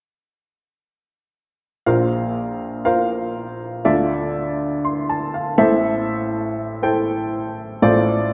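An upright piano sits up front, its woody, natural tone carrying the whole of this short pop fragment cut from a longer piece. It plays an accompaniment role in straight 4/4, entering at 1.9 seconds and stopping at 8.3 seconds, spanning a range from A1 to C6. The chords move from Bbsus2 through Dmadd9 and Am before settling on F6/A, giving the passage a hopeful, warm feeling. A wet, lush hall reverb with a long tail surrounds the instrument and lends the brief phrase a spacious glow. The overall sound keeps the loose, unpolished character of a rough home demo mix.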